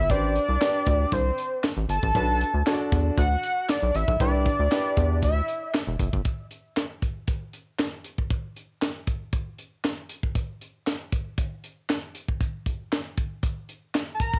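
Lightly reverberant with the character of a home cassette recording, this slick, danceable snippet of early-eighties boogie funk opens with a fat, detuned sawtooth lead carrying the melody over a rubbery, nasal square-wave bass, a clear grand piano comping through Am11, Bm7 and Cmaj9, and a tight, up-front funk kit with a high-tuned snare, hi-hat and handclaps; the kit then plays alone from 6.2 seconds before the lead briefly returns at 14.1 seconds.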